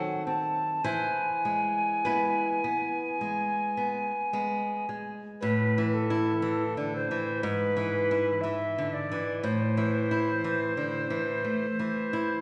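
The recording sits in a reverberant recital hall, with a long, wet tail around both players and a gently rolled-off top end, like a performance caught in a church or concert hall. This short cut from a longer piece is a romantic duo in a yearning, solemn mood, moving slowly and freely in rubato. The alto recorder carries the melody up front, with a woody, airy tone, lifted highs, tongued notes with audible chiff, and a touch of vibrato. The nylon-string guitar accompanies close by, fingerpicked on bright, fresh strings, its small body and finger squeak adding intimacy. The harmony opens on a tense diminished chord, shifts into a new passage at 5.4 seconds, and settles onto A minor at 9.4 seconds.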